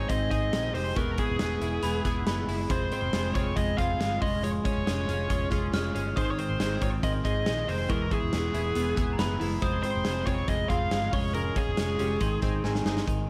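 Lightly reverberant and dusted with vinyl crackle, this breezy, nostalgic slice of jangly indie pop moves at 139 BPM in Ab major, cycling through Ab, E, Fm and Db/F. Up front, a dark, overdriven lead guitar carries the melody through analog delay over a big-room rock kit with a punchy kick and a round, foam-muted fingered bass. Behind them, a clean twelve-string electric guitar picks arpeggios, a full-bodied jumbo acoustic is fingerpicked, glossy chorused retro synth keys add pulse-width modulation and a filter sweep, and an airy glockenspiel struck with soft plastic mallets rings a bell-like second line through plate reverb, with a drum fill arriving at 12.6 seconds.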